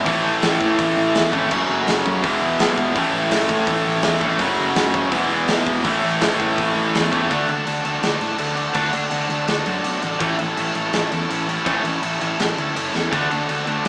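Rebellious and rowdy, this short cut from a longer punk rock track charges along at 165 BPM in a straight 4/4 in A major. Two tight, distorted electric guitars play riffs up front, one bright and one warm, both picked and double-tracked, cycling through A, F#m and E before shifting to D and A. Beneath them a fuzz picked electric bass adds a growly, overdriven low end, while a big acoustic rock kit with a punchy kick, medium-tuned snare, hi-hat and crash cymbal sits up front in the mix. At 7.3 seconds the band drops into a half-time feel, and a drum fill lands at 12.9 seconds before one guitar stops at 13.3 seconds. The whole thing sounds like a band playing live in one room through a small speaker, with moderate studio reverb.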